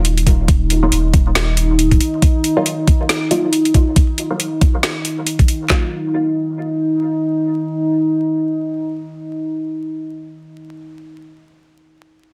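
A swung, half-time 138 BPM groove in Eb minor drives this brooding, meditative deep dubstep excerpt, built on two layered, overdriven electronic drum kits: one carries metallic hi-hats and a woody snare, the other a knocking kick, handclaps and snare, and both drop out by about 5.8 seconds. A deep, moody pad of detuned saw and sine voices with a sub octave holds sustained chords up front under chorus and reverb, while a thick, triangle-toned saturated sub bass sounds only in the opening 2.0 seconds. A muted, plucky chord stab enters at 0.8 seconds with phaser, lush chorus and dub echo, its filter sweeping through the first section before the harmony settles on Ebmadd9 at 5.7 seconds, all set in a wet digital room with vinyl crackle and a dense, heavily limited master.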